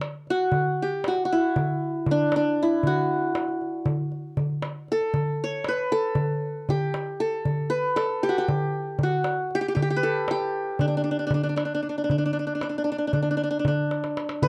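Set in a 9/8 metre with a straight feel, this Turkish makam ensemble piece moves at a brisk, festive clip while keeping a stately bearing. The qanun carries the melody throughout, its triple strings played with fingerpicks to give a bright-edged, acoustic tone that stays between D4 and C#5. Alongside it, a small, high-pitched darbuka with a clay shell and natural skin is played with soft hands. Its sound is compressed and saturated. Both instruments sit up front in a dry, close recording with a 1970s studio character and a hint of small room ambience. Near the end of this excerpt, a drum fill at 13.9 seconds closes the passage.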